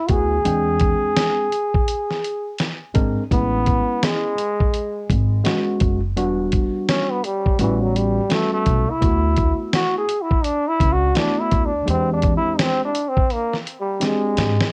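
Relaxed and warm, this jazz-hop excerpt sets a clear, vintage trombone up front over a worn, slightly out-of-tune tine electric piano played through a combo amp, a woody, dark pizzicato upright bass, and a gritty, compressed sampler-style soul drum kit with a thumpy kick and fat snare, with cassette-tape grit on the trombone, keys and drums, a trombone solo from 3.3 seconds, and a drum fill at 14.0 seconds, all in a moderate home-studio room.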